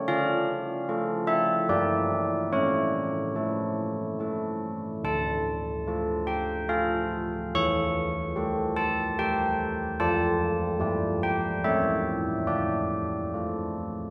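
Carillon bells open this short, solemn classical fragment alone, playing a tune in three-four across a range from D3 to C#6, cut from a longer piece. Their bronze tone carries a distinct minor-third overtone, and the padded clapper keeps each strike mellow and soft while the bells sit up front. A wet recital-hall reverb in a church or concert hall lets the ringing hang in the air, giving the minor harmonies a wintry stillness through to the close at 14.1 seconds.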